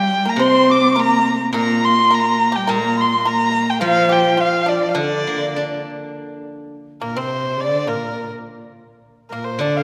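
A dark erhu carries the melody up front in this brief, graceful excerpt of Chinese traditional chamber music. Its bowing is airy and intimate, with light vibrato, soft attacks and sliding portamento over a smooth top. The feel is rubato in 2/4, tender rather than driven. Beneath it, a large bamboo dizi sounds distant and very quiet, its buzzing membrane giving a pure, mellow tone with vibrato and tongued notes, though its pitch is unsteady. A dry, percussive pipa played with fingerpicks and a close, expressive cello with vibrato and portamento add second lines, while a steel-string zither rings out a silvery accompaniment from 0.4 s to 6.7 s and returns briefly at 9.6 s. A new passage begins at 6.2 s, and the ensemble sits in a wet concert hall reverb with a long tail.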